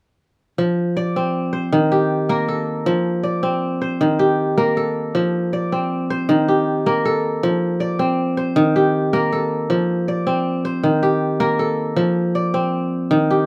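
A crisp, ringing, fingerpicked acoustic kora sits up front from 0.6 to 13.5 seconds, its arpeggios spanning Eb3 to D5 in this hypnotic, flowing West African traditional passage in F mixolydian, set in a straight 12/8 at 105 BPM. The harmony alternates between F5 and Eb chords throughout this fragment of a longer piece, and moderate studio reverb gives the kora a gentle sense of space.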